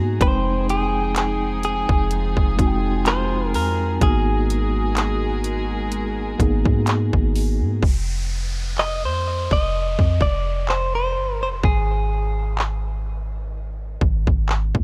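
Contemporary R&B at a slow 63 BPM with a late-night, moody feel, this excerpt pairs a mellow tine electric piano and soft, sul tasto bowed strings over Fm9 and Abm9 chords with a deep, boomy 808-style bass and a trap kit of hard-clipped kick, metallic hi-hats and handclaps, while a bright, direct-recorded clean electric guitar carries the melody through spring reverb and delay; at 7.8 seconds the piano and strings stop, the hi-hats are muted and an electronic downlifter enters under F5 and Ab5 chords, all set in a dark, dry production.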